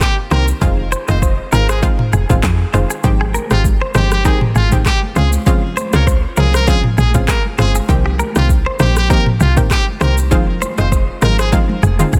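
A brilliant, forceful trumpet with vibrato and scooped notes carries the tape-echoed melody over a breezy, sunny 99 BPM afrobeats groove with a light sixteenth-note swing, driven by an up-front electronic drum kit with a deep kick, handclaps, rim clicks, shaker and toms, a punchy, woody FM log drum bass, a round, detuned sawtooth pluck with chorus, and a twangy, direct-recorded clean electric guitar riff bathed in spring reverb and tape echo, while distant, high-tuned congas join softly at 3.0 s and a drum fill at 11.5 s closes this dense, heavily limited cut moving through Cm7, Fm7, Abmaj7 and Dbmaj7.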